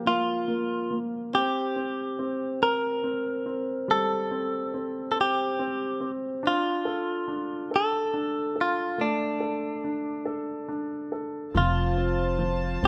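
In a slow, swaying 6/8 at 47 dotted-quarter beats per minute with a straight feel, this tender pop fragment is cut from a longer piece. A clean, picked electric guitar, recorded direct and compressed with a warm, up-front tone, carries the melody between D4 and Bb4. Beneath it, a polished baby grand piano plays clear, present accompaniment through the chords Bb5, C5, Dm and F. At 11.5 seconds, an upright bass enters with a woody pizzicato on a low F1. A distant studio string section enters at the same moment, holding bowed chords with a dark, reedy gut-string tone and light vibrato. Light reverb and small-room ambience give the whole a rough home-demo character.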